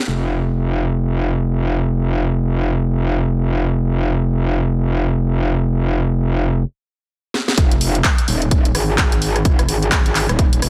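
A metallic, wobbling FM bass sits up front in this swaggering, gritty bass house excerpt at 128 BPM in F minor, its aggressive, saturated low notes pumping against the beat with chorus and overdrive over a swung 16th-note feel. The bass drives the opening alone until a stop at 6.6 seconds, then a house kit of handclaps, hi-hat, rim click and cracking snare enters with a fill at 7.3 seconds. At 7.6 seconds a punchy, overdriven electronic kick joins for the drop, both drum parts carrying the sound of a large room within an otherwise dry mix.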